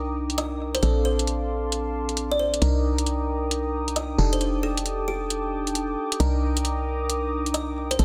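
A dense, heavily limited modern master with light reverb and a digital ambience frames this soulful, late-night two-step UK garage excerpt at 134 BPM in C dorian, swung on the sixteenths and cycling through Cm9, Bbmaj9 and F13. A hollow, knocking FM bass and glassy, bell-like FM electric piano stabs with chorus, phaser and tape echo sit up front over a smooth, warbling, detuned analog pad. Layered electronic hi-hats, low-pass filtered and re-recorded in a small room, enter at 0.3 seconds, and a woody, airy kalimba melody with tape echo follows at 0.4 seconds.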